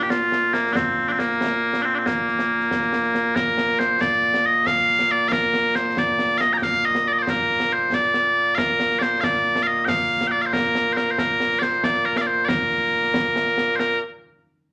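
Bright, piercing bagpipes carry a continuous, up-front solo melody over close acoustic concert snare and bass drum with dark cymbals from the very start, a proud, ceremonial stretch of Scottish pipe music in 6/8 at 92 BPM in Bb major, set in a wet studio reverb and cut from a longer piece, with a new section arriving at 3.4 seconds.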